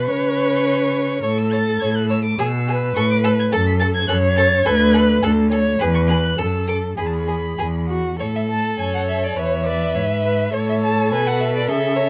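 A rich, focused cello sits up front, carrying the bass line beneath a quick, spirited classical-period string quartet movement in 2/4 with a flexible, rubato feel. Above it, a single violin with a clear, vibrato-laden tone sings the melody high in its range, while a second violin adds a smooth, even second line in the middle register. The viola fills in the accompaniment with a close, expressive sound, soft attacks and touches of portamento. All four players are bowed, one to a part, and a light reverb surrounds the ensemble. The lively passage, cut from a longer piece, moves into a new section at 8.2 seconds and runs to 12.1 seconds.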